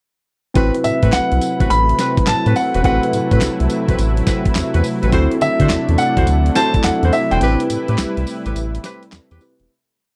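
This is a slick, confident piece of new jack swing R&B, built on a hard-swung drum-machine beat from a gritty, sampler-style kit with a thumpy kick, a medium-tuned snare layered with handclaps, hi-hat and tambourine. Up front, a round analog synth bass with a deep, dark tone plays a bouncy funk line dotted with muted ghost notes. A barky tine electric piano holds rootless chords with grace notes, a lush, thick, warbling pad sustains the harmony with chorus, and a smooth-topped jazz horn section punctuates with short syncopated stabs. From 0.8 seconds an intimate concert grand carries the melody in song-like motifs, its polished tone, audible action noise and slapback echo sitting close and present. The harmony moves from Am69 to D9 and settles on Am9 as the arrangement breaks down and fades out from 7.4 seconds, all captured in a dry, close, 1970s-style studio sound.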